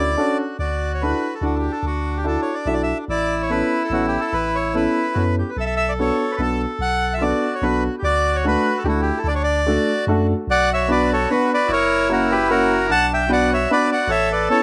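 Charming and whirling, this short excerpt of a musette waltz in D major sways at 146 BPM in 3/4 with a light swing. A bright, reedy bandoneon leads the melody up front over a hollow accordion second line, both touched with slapback echo. A clear, worn, slightly detuned upright piano with woody, long-sustaining tones enters at 0.2 seconds. A deep, punchy sine sub bass with a pitch-drop attack anchors the bottom. It all sits in a dry, open-air sound before shifting toward B minor around 10.5 seconds.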